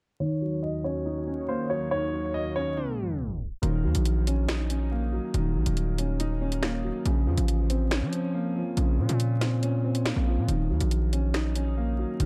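Drill hip hop at 140 BPM in a half-time 4/4 feel, ominous and tense, in which a clear grand piano melody and a dark, boxy grand piano accompaniment, both low-pass filtered with dub echo, float over a warbling, detuned tape-like pad through a filter sweep and tape stop until 3.6 seconds, when a saturated, aggressive 808-style bass and an electronic drill kit of sharp snare, hi-hat and finger snaps take over beneath the dark piano within an echo-heavy mix of vinyl crackle, light reverb and small room ambience over Ebm7 and Bbmadd9 chords, cut from a longer piece.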